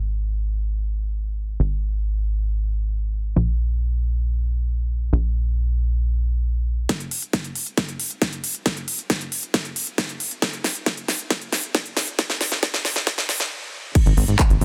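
Driving straight 4/4 at 136 BPM opens this short, emotional uplifting trance cut with a plucky, funky sawtooth-and-square analog bass pumping up front alone until 6.9 seconds, when a punchy layered electronic kick and a big-room dance kit with a huge snare, crisp hats, handclaps and crash cymbal burst in for a drum-fill build-up that halts with a stop at 13.5 seconds before the bass briefly returns, all inside a dense, heavily limited digital ambience.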